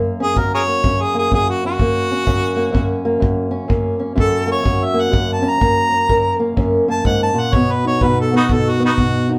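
A clear, up-front harmonica with vibrato and tongue slaps carries a jazz-style solo through this laid-back, gritty acoustic country blues excerpt at 125 BPM in F# major, swung over a dark, boxy fingerpicked parlour steel-string guitar with finger squeak and a smooth, punchy kick drum played with brushes and a rolled-off top, all caught live in one room with wet studio ambience as the harmony moves from F# to B at 7.5 seconds.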